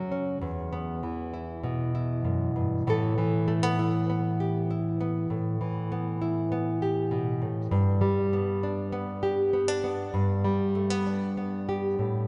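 In a straight 4/4 at 99 BPM, this wistful, reflective folk excerpt features a solo fingerpicked nylon-string guitar with a classical touch, spanning E2 to A4 and sitting up front in the mix. The harmony moves from Emadd9 to Asus2 at 2.9 seconds and on to G at 7.7 seconds. A wet church reverb with a long 2.9-second tail surrounds the guitar, while the top end stays soft and rounded.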